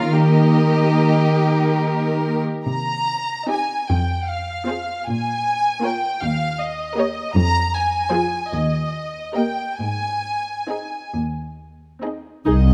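Closely miked with light reverb, this brief, tender cut from a longer slow romantic movement for muted string orchestra drifts in rubato 6/8 around 44-53 BPM in Ab major, with the veiled, up-front melody of the con sordino violins above a warm second violin line of soft attack and vibrato, dark muted violas filling the middle, a shadowed cello bass carrying the harmony from Eb through Cm7, Fm and Bbm7 to a resolving Ab, and a lush bowed double bass section touching a low C only at 12.5 seconds.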